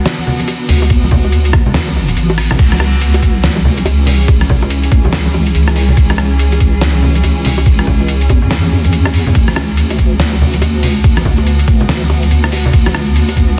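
Meditative and cavernous, this deep dubstep excerpt at 142 BPM rides a swung half-time feel in C# phrygian, where an up-front, dark wobbling sine bass with chorus sits under a blurred, evolving granular cloud pad holding sustained D6 and C#m chords, while a gritty, pitched-down sampler drum kit with a clipped snare, a thumpy electronic kick that drops out from 2.2 to 2.6 seconds, and dry ringing bongos and congas with dub echo in the background fill out a dense, heavily limited master dusted with vinyl crackle.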